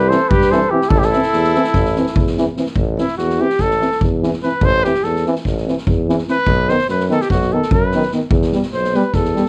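Bittersweet and virtuosic, this Balkan brass band excerpt moves at a brisk 292 BPM in eighths through a straight 9/8, in A dorian sharp4, with a smooth, warm flugelhorn carrying the melody up front until 2.4 seconds and a close-miked trumpet taking over as soloist from 2.8 seconds. Beneath them a clear tuba with light vibrato holds the bass, a present trombone and a dark, vibrato-tinged euphonium in the background supply accompaniment, and a street-band drum kit with a boomy kick, medium-tuned snare and rolled-off top drives the pulse. The chords move from C to Am, then B and Em, all in a small room with moderate reverb and a dark, warm production.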